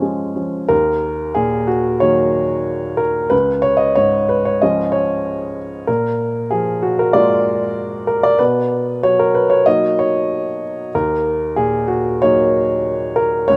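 A woody upright piano plays alone from 0.0 to 13.6 s, sitting up front with audible action noise and a smooth, vintage tone in this wistful, intimate piece of neoclassical minimalism, cut from a longer work. Set in Eb minor at 95 BPM in a rubato 4/4 and tuned to A4 = 439 Hz, it spans Db2 to Db6 as the harmony moves from Ebm7 through Db, Bb7 and Bmaj7 before returning to Ebm7. Light reverb and small-room ambience give the rough home-demo mix an intimate feel.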